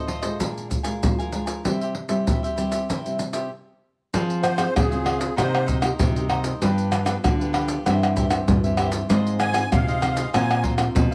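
The recording sits in a moderate studio reverb. The percussion is up front, and the accordion sounds close-miked and dry against the room. This excerpt of samba and choro is in F minor at 97 BPM in a straight 4/4, with a yearning, nostalgic mood. A crisp, picked cavaquinho and a full-bodied, fingerpicked classical nylon-string guitar with audible finger squeak carry the accompaniment from the start, and pandeiro, maracas, tight surdo and tamborim bring a vintage, band-limited percussion sound from 0.1 s. After a brief stop, a second classical nylon-string guitar enters in the background at 4.1 s, playing a thumb-plucked bass line. From 4.4 s the reedy musette accordion takes a solo, its shimmering musette tuning giving the melody a full voice over harmony that moves through Fm, Cm7, G7, C/G and Fm7/Ab before reaching Bbsus2.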